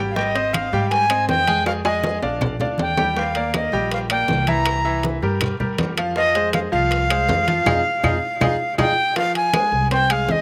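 A brilliant grand piano with audible action noise and slapback echo and a dark, woody pizzicato upright bass open this driving, danceable salsa excerpt in F minor at 160 BPM, joined almost at once by an airy, reedy silver flute melody up front with its own slapback echo, while close, soft-handed congas, ringing metal-shell timbales with slapback echo, distant high-tuned bongos and background claves drive a dry, outdoor groove marked by drum fills at 1.7 and 8.4 seconds and a full-band accent from 7.7 seconds.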